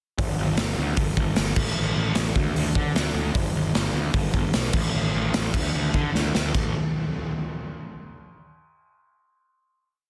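A straight, fast 4/4 punk rhythm at 151 BPM drives this short, angry and raw punk rock piece from the first beat at 0.2 seconds. The raw garage drum kit plays a fast punk groove with crash cymbal, hi-hat, a punchy kick and a medium-tuned snare, its saturated, gritty sound set up front in a bright stone room that pumps audibly. Alongside it, the picked electric bass, spanning G1 to D3, pushes a driving eighth-note line, its fuzz and overdrive giving it a growly, direct-from-the-amp bite. The pair hammer through a single riff until a drum fill at 6.1 seconds leads into a final note that holds from 6.5 to 8.1 seconds. The mix is dry and dense, with a heavily limited modern master that keeps both instruments close and forceful.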